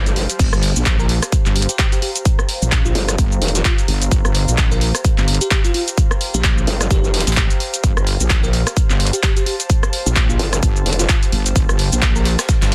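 A growling, formant-filtered growl bass and a warbling, nostalgic lo-fi pad open this bouncy, gritty bass house fragment, soon joined by a punchy, up-front electronic kick, a layered big-room kit of crash, handclaps, hi-hat, rim click and shaker, a faint, pitched-up breakbeat kit of hi-hat and snare, and a heavy, saturated, detuned wobble bass, with the basses and pad pumping against the swung groove while a sparkling, bell-like FM electric piano with phaser and tape echo sits in the background of a dry, densely limited mix.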